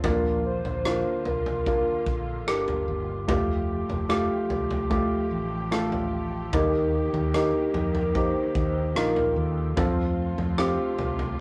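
An intimate grand piano sits up front in this tender, emotional pop ballad, its natural tone carrying audible action noise as it plays the accompaniment at a slow 74 BPM in 4/4 with a straight feel, in Bb major. Beneath it, a lush bowed string section holds sustained chords with vibrato, portamento and a smooth top, while a dark, round fretless electric bass keeps the low end. An acoustic country drum kit with a punchy kick, rim click and toms adds a natural studio-room presence. A hollow, woody synth lead with a soft attack, vibrato and chorus carries the melody from 0.1 to 10.6 seconds, sitting mellow in the background. The harmony moves through Bb, Fadd9, Eb and F, and the whole cut from a longer piece has a rough rehearsal-room quality with moderate reverb.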